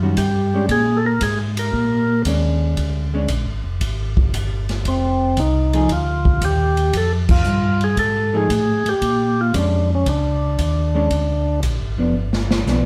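Heard from further back in a wet club room, this bluesy, soulful soul jazz organ trio fragment swings in 4/4 as a round, dark tonewheel organ bass with chorus vibrato and slow rotary speaker sits beneath a percussive, key-clicking tonewheel organ melody, while a clean, picked hollow-body jazz guitar comps throughout and an airy, polished big-band drum kit with punchy kick, ride and crash supports a band accent at 7.2 seconds before a drum fill at 12.2 seconds.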